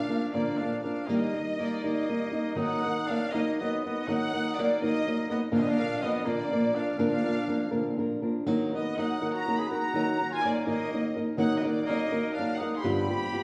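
Mexican folk in the mariachi tradition, this short excerpt cut from a longer piece moves in a proud, festive 6/8 at 82 beats per minute in Eb harmonic minor. A bowed violin section carries the melody up front, its ensemble tone focused and smooth on top, with vibrato coloring the line as it sits between D5 and C6. Beneath it a solo trumpet plays a second line in a classical style, sounding distant and roomy in a lower register. An acoustic flamenco guitar, thumb-plucked and placed up front, provides the accompaniment and is the most prominent part in the mix. The harmony moves from Bb to Eb before settling into Eb minor at 2.6 seconds, returning to Bb and Eb minor before landing on G7 at 12.8 seconds. All three parts play throughout, set in a wet recital-hall reverb alongside small-room ambience.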